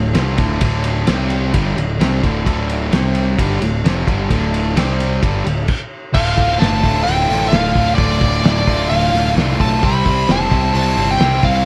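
Brooding and driving, this classic rock excerpt moves at 130 BPM in D minor, with two overdriven guitars, one bright and cranked and the other sludgy and set in the background, churning out a riff over fuzz-laden picked bass and a cloth-damped, thuddy drum kit that sits up front with a fat snare, tight kick, dark cymbals and a muffled, lo-fi grit. A very quiet tonewheel organ holds sustained chords through slow rotary speaker and key click until 5.7 s, when a brief stop clears the way. At 6.1 s a smooth, up-front overdriven lead guitar takes the melody high above the band, all under light reverb.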